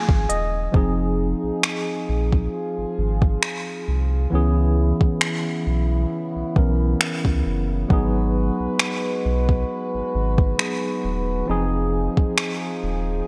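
A clean tine electric piano opens with a short fill before settling into accompaniment, joined by a warm brass ensemble holding sustained chords with light vibrato and a sidechain pump, in this sensual, longing contemporary R&B excerpt with a lightly swung feel. A deep, round sine sub bass enters at 0.1 seconds alongside an electronic drum kit of finger snaps, crisp hi-hat and a soft kick, the drums overdriven and treated with gated reverb, up front with the bass and piano. A lush hall reverb and bright 1980s-style digital production wrap the whole, and the drums drop out at 12.6 seconds as the piano, brass and bass carry on.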